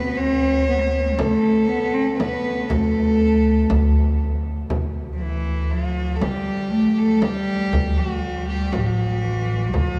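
Arabic maqam ensemble music in D maqam rast, this passionate, festive excerpt moves at 119 BPM in a straight 10/8, cut from a longer piece. A single bowed cello carries the melody up front, its tone intimate and sul tasto with light vibrato and a soft attack. Behind it, a rich violin plays a second line, also bowed sul tasto with an airy bow and gentle vibrato, while a pizzicato upright bass supplies a woody, growly low end from steel strings. A deep, large frame drum enters at 1.2 seconds, close and dry but very quiet beneath the strings. The players sit in a cathedral-like space with a long, wet reverb, and the music shifts into a new section at 4.7 seconds.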